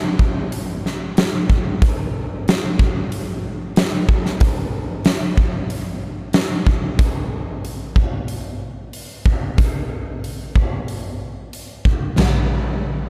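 Melancholic and brooding, this rock excerpt moves at 93 BPM in a straight 4/4, carried entirely by a huge arena drum kit that plays from 0.2 to 12.3 seconds. The acoustic kit sits up front with a punchy kick, fat snare, bright cymbals including china and hi-hat, and toms, all heard in a hall setting. A light reverb adds a sense of space around the drums.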